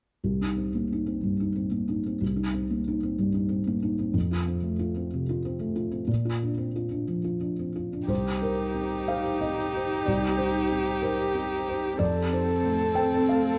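Longing and fragile, this neoclassical excerpt for piano and strings drifts at 62 BPM in a rubato 6/8, cut from a longer piece and set in C dorian. A felt-muted upright piano opens the accompaniment at 0.2 seconds, its thick felt giving a soft, mellow, short-sustained tone, with audible action noise that keeps it intimate and up front. At 8.1 seconds the texture opens out: a single bowed violin takes the melody, woody and close, played sul tasto with vibrato, while a lone viola adds accompaniment with a soft attack and an airy bow. Alongside them a very quiet, warbly tape-like pad holds sustained chords, its lo-fi, nostalgic hum carrying chorus and a slow attack with a long release. The harmony moves through Cm7, F and Bbadd9 before returning to Cm7 and F, and light reverb wraps the whole in a dusky, warm production that runs until 13.6 seconds.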